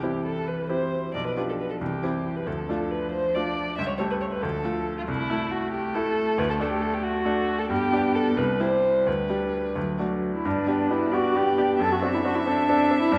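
A wet recital-hall reverb surrounds this graceful, cheerful excerpt of a quick classical-period piano trio movement in 6/8, where a veiled, muted violin sings the melody up front with vibrato and portamento over a dark, more distant muted cello line, while a brilliant baby grand with audible action noise and short sustain supplies the accompaniment, the music shifting into a new section at 10.4 seconds.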